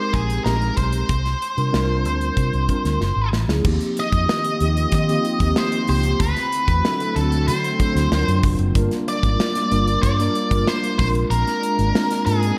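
Slick and bittersweet, this short cut from a longer piece is polished 1980s jazz-funk pop at 94 BPM in a straight 4/4. An octave-fuzz lead guitar carries the melody up front with a picked, distorted bite and analog delay, set over a mellow tine electric piano whose clean chords shimmer through ensemble chorus. Beneath them, a dark, foam-muted fingered electric bass gives a round, punchy low end, while an airy modern studio kit with hi-hat, punchy kick, medium-tuned snare and crash cymbal keeps time and plays a drum fill from 3.0 to 3.6 seconds. At 4.1 seconds a hollow, flute-like pad slips in behind everything else, warbling and detuned with a slow attack and long release. The harmony moves through rich chords such as Abmaj9, Gbm9, Eb69 and D7alt before settling on Bb9. A moderate plate reverb and small room ambience soak the mix in a dreamy haze.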